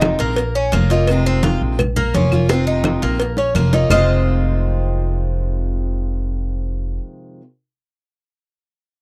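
Dry and close, this short cut from a longer piece has the intimate feel of a 1970s studio, with little reverb around the players. It is a sultry, nostalgic slice of Cuban son and guajira in a straight 4/4, built on Bbm and Fm7 trading back and forth. A metallic, double-strung tres sits up front playing arpeggios, its octave-doubled strings ringing beside a bright, boxy archtop guitar whose picked accompaniment carries audible finger squeak. The pizzicato upright bass is also up front, woody and steel-strung in the low register. Ringing congas, tight high-tuned bongos and cowbell played with soft hands, and claves in the background drive the groove, with a drum fill from 2.5 seconds before the percussion drops out at 4.0 seconds, leaving the strings to carry the second section.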